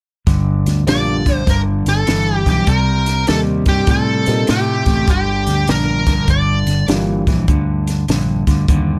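Electric blues shuffle in G minor at 100 BPM with a mournful, smoky mood, where a slightly broken-up guitar riff with spring reverb, round foam-muted bass and a dry cocktail kit with a high-tuned snare and punchy kick carry the groove through Gm7 and Cm7 as a bright, overdriven lead guitar sings its melody from 0.9 to 6.9 seconds over a mellow, boxy grand piano, all in a nearly reverb-free room.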